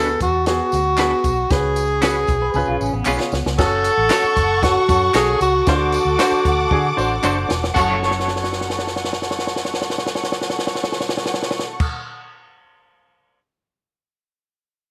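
A breathy tenor saxophone leads this urgent, passionate slice of uptempo 1960s-style soul, its whispered, scooped melody sitting up front with tape echo until 7.2 seconds. Underneath, at 115 BPM in a straight 4/4 and F# minor, a dark, mellow baby grand piano and a round, foam-muted fingered electric bass hold down the accompaniment, while a twangy electric guitar at the edge of break-up adds picked stabs through tremolo. A compact cocktail drum kit with a high-tuned snare, tight kick and dark cymbals comes in at 0.2 seconds, joined by compressed tambourine and group handclaps tucked in the background. A second lo-fi guitar through a small old amp plays a brief tremolo riff from 2.4 to 3.6 seconds, just before a lush, bowed violin section enters at 3.6 seconds with a smooth second line. The harmony moves from G#m7b5/D through C#7sus4 and C#7 before settling on F#m and D7, with drum fills marking each turn in a small room with light reverb. 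Cut from a longer piece, it closes with the drums carrying on alone to 13.4 seconds.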